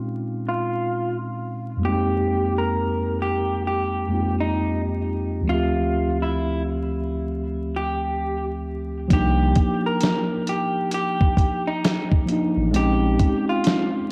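Lo-fi hip hop excerpt at 66 BPM with a gentle 16th-note swing and a reflective, hazy mood, where a mellow, clean tine electric piano under a low-pass filter moves through minor eleventh chords beneath a slightly broken-up, fingered electric guitar melody softened by filtering, cassette tape and tape echo, until at 9.1 seconds a deep, round sine sub bass and a gritty, compressed sampler-style drum kit with hi-hat, thumpy kick and medium-tuned snare enter, the whole scene set in moderate spring reverb with vinyl crackle from a home cassette recording.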